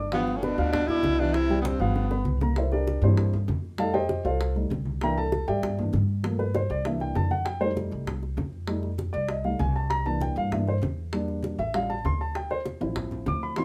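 Afro-Cuban jazz with a sophisticated, sunny mood opens with piano and upright bass beneath a breathy tenor saxophone melody, mellow and scooped, shadowed by a distant, subtone baritone saxophone line; both horns fall away at 2.3 s as a drum fill leads into the next section. From 2.6 s, a dark, intimate baby grand piano with audible action noise takes a solo over woody pizzicato upright bass, with close, dry, round bongos and, in the background, soft-handed, thin-skinned congas. A moderate studio ambience frames this short cut from a longer piece.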